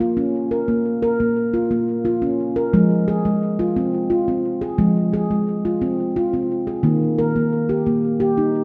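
A ringing, dark-toned nitrided-steel handpan plays alone and up front through this brief, gentle fragment of meditative world music, moving slowly at 59 BPM in a straight 6/8 through Bb dorian over Bbm, Fm and Eb, its mellow tones carried by tape echo and a lush scoring-stage reverb.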